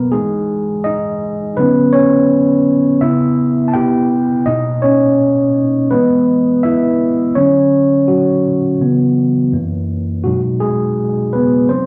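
A lazy 83 BPM pulse in 4/4, with a moderate swing on the sixteenths, sets the pace for this mellow, nostalgic hip hop fragment in B major, cut from a longer piece. A lone tine electric piano carries it from the first second, sounding clean and direct, placed up front and ranging from F#2 to A5. Cassette tape coloring and a low-pass filter soften its sound, while a modest small-room reverb gives it a close, intimate space. The harmony moves through Emaj7, Dmaj7 and C#m7, then Cmaj7 and Bmaj7, before the cycle returns and turns on F#7. At 10.2 seconds a brief closing passage settles onto a B6 chord, ending at 11.9 seconds.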